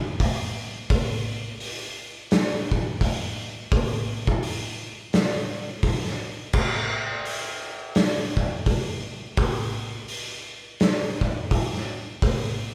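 This metal recording is ominous and heavy, moving at 85 BPM in 4/4 with a swung eighth-note feel. Its only part is an oversized, low-tuned acoustic drum kit of kick, snare, hi-hat and crash cymbal, which enters at 0.2 seconds and plays until 12.4 seconds. The kit sits up front and sounds dark and saturated, with a punchy kick, a fat snare and dusky cymbals, all carrying a gritty edge. It rings in a bright stone room with light reverb, capturing the feel of players performing together in one space. This short passage is cut from a longer piece and stays within a single section throughout.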